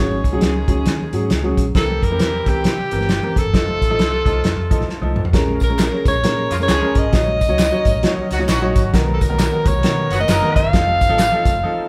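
The bright, up-front alto saxophone carries the melody over this passionate, driving slice of uptempo 1960s-style soul at 133 BPM in Bb minor, with a distant horn section adding a clear second line, a smooth vintage grand piano comping, and a round, foam-muted fingered bass underneath. A dark soul drum kit with a fat snare and tight kick sits up front beside very quiet, high-tuned congas, and after a drum fill at 4.9 seconds, a gritty overdriven tonewheel organ with slow rotary and key click joins at 5.3 seconds alongside background tambourine, egg shaker and group handclaps. The band plays live in one large studio with moderate reverb, and the excerpt ends on a break at 11.6 seconds.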